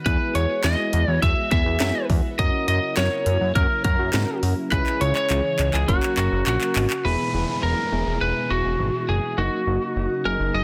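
A dense, heavily limited modern mix with light reverb and digital ambience carries this nostalgic, wistful synth-pop excerpt at 103 BPM in a straight 4/4. Up front, a dark, slightly broken-up lead guitar picks the melody through digital delay over a fat, detuned sawtooth analog bass. Soft, round electric-piano-like synth keys with chorus add accompaniment, while a vintage, organ-like ensemble string pad sits in the background on sustained chords moving from Eadd9 to C#madd9. A punchy house drum kit with cracking snare, handclaps and hats plays a fill from 4.7 seconds and stops at 7.0 seconds, when an electronic downlifter enters beneath the closing E and D#m7/F# chords.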